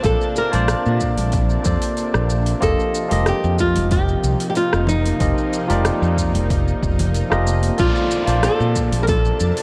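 A round, dark fretless electric bass sits up front in this relaxed sunset chillout excerpt, beneath a fingerpicked flamenco guitar melody roughened by 12-bit sampler grit and delay, and a barky tine electric piano through a combo amp with delay and a filter sweep until 7.8 seconds. A shimmering, ethereal pad with octave-up sparkle, chorus and granular texture holds Bbmaj9 and F7sus4 chords, while an overdriven, punchy electronic kick and a deep house kit with metallic hi-hats, rim click and shaker drive the straight 4/4 groove. Soft-handed congas play in the background from 0.5 seconds, a downlifter arrives at 7.8 seconds, and the whole mix carries light reverb and the warbling pitch drift of worn cassette tape.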